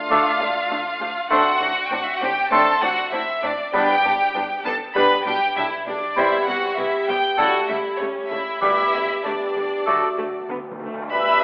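The muted violin section carries the veiled melody up front in this graceful, cheerful excerpt from a quick classical-period orchestral movement in G major at 99 BPM, with a second violin line, airy flute, oboe and soft-attack clarinet weaving secondary lines, viola and bassoon accompanying, the horn section holding sustained chords, cello and double bass supplying a dark bass, and round soft-mallet timpani entering at 3.7 seconds and returning at 8.6 seconds with a fill from 9.9 seconds, all set in a wet recital-hall reverb with a telephone-like sound.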